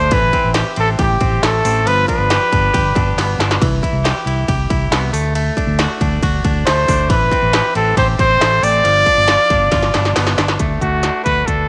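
Breezy and youthful, this excerpt of jangly indie pop moves at 138 BPM in a straight 4/4 over a light reverb, with a bright, twangy, clean electric guitar picking compressed arpeggios throughout while a round, dark fingered bass and an up-front electronic drum kit with a heavy kick, clanging snare and crisp hats drive underneath. A pop-style trumpet with light vibrato carries the solo melody from 0.0 to 3.4 seconds and returns at 6.7 seconds, its slapback echo adding a playful sheen. The chords cycle through Am7, G7, Cmaj7 and D, with drum fills at 3.2 and 9.7 seconds before a brief new section lands on D at 10.6 seconds.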